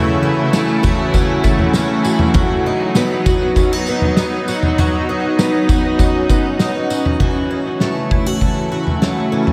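A shimmering, detuned pad of sustained chords and a boxy, octave-doubled fingerpicked twelve-string guitar spinning chorus-soaked arpeggios through tape echo open this haunting, ethereal dream pop excerpt, joined at 0.5 seconds by a loose indie drum kit with a punchy kick, tambourine and toms in a pumping room, all moving from F#m7 to B and back within a dreamy, reverb-drenched hall.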